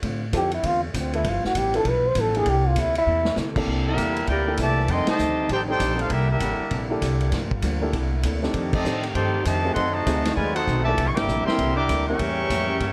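A veiled, cup-muted trombone carries the melody early in this joyful, brassy big band swing excerpt in C major at 197 BPM, until a drum fill at 3.1 seconds hands the lead to a brilliant trumpet section at 3.9 seconds. Beneath it, a punchy trombone section plays a second line and a bright, very quiet trombone section holds sustained chords. Band accents land at 5.0, 8.7 and 11.1 seconds over a woody pizzicato upright bass, a vintage drum kit with dark cymbals and a tight kick, a short-sustain grand piano and a clean, compressed hollow-body electric guitar, all in a dark production with light reverb.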